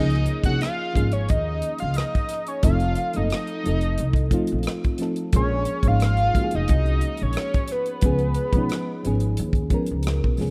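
A fat, detuned analog lead with chorus, phaser and vibrato sings the melody over a round, warbling FM electric piano and a woody, thumpy pizzicato upright bass, joined at 0.1 seconds by a dry, up-front funk drum kit of tight kick, hi-hat and rim click, in this smooth, soulful neo-soul R&B excerpt at 89 BPM in Db major, with a gentle swing, moving through Db69, F7, Bbm7 and Db7 under light reverb, studio ambience and the vinyl crackle of a rough home demo mix.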